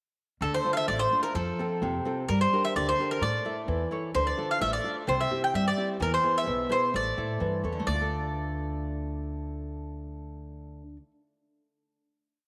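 At 0.4 s, a Greek bouzouki, a nylon-string guitar and an upright bass enter together in this brooding, moody Greek folk piece for a small bouzouki band in a straight two-beat metre. Up front, the picked bouzouki carries an ornamented modal melody on its metallic double strings, some of them doubled at the octave, giving the line a bright edge. Close beside it, the fingerpicked guitar sounds full-bodied and freshly strung, with a deep classical tone as it alternates bass notes and chord figures in an oompah accompaniment. Underneath, the pizzicato bass adds a woody, growly root-and-fifth pulse on the main beats. The harmony moves through D minor, F, G minor, A, D minor, C, E and A before settling on a final D minor chord at 7.9 s. A moderate plate reverb gives the short piece a lingering, spacious tail.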